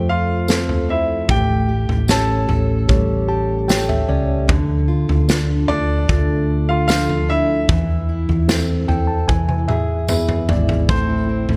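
A clear, polished baby grand piano carries the melody of this emotional, melancholic pop ballad excerpt from the first moment, over a mellow tine electric piano, a full-bodied fingerpicked jumbo acoustic guitar playing arpeggios through a digital delay, and a dark, round hollow-body electric bass. At 0.5 s a distant, roomy studio drum kit with a punchy kick and medium-tuned snare joins, with a jingly tambourine tucked far in the background. The electric piano adds fills as the chords move from F through Dm and E, and a drum fill at 9.3 s leads into a resolving Am, all under light reverb.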